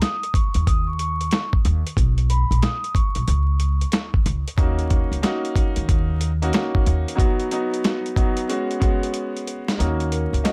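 A gritty, overdriven sampler-style drum kit with a thumpy kick and medium-tuned snare drives this reflective yet tough boom-bap hip-hop excerpt at 92 BPM in Eb minor, swung on the 16ths, joined at 0.5 seconds by a woody, dark pizzicato upright bass. A mellow, ringing vibraphone played with soft mallets carries the melody through the opening break, returning briefly at the close, while a polished upright piano with long sustain and a cassette-tape tint enters at 4.6 seconds with chords moving from Ebm7 through B and Db7sus4. A drum fill at 9.1 seconds leads into a passage where the kick drops out, all under light reverb and a layer of vinyl crackle.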